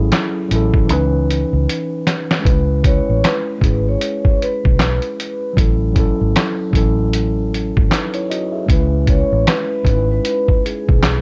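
Reflective and nostalgic, this lo-fi hip hop passage, cut from a longer piece, moves with a lazy swing on the sixteenths. A mellow tine electric piano sits up front as accompaniment, its clean tone heard through built-in speakers and softened by cassette tape and a low-pass filter. Underneath, a dark, foam-muted fingered electric bass gives round, punchy support. The sampler-style drum kit is compressed and pitched down, with a thumpy kick, medium-tuned snare, hi-hat and handclaps re-recorded in a small room, and it plays a fill from 0.9 to 2.5 seconds. At 2.9 seconds a vibraphone with soft mallets takes the melody, metallic and ringing, with a slow motor vibrato and a band-limited, vintage colour. The harmony drifts between minor seventh and ninth chords and a sixth chord, all within a dry, gritty hardware sound with a cassette haze and little reverb.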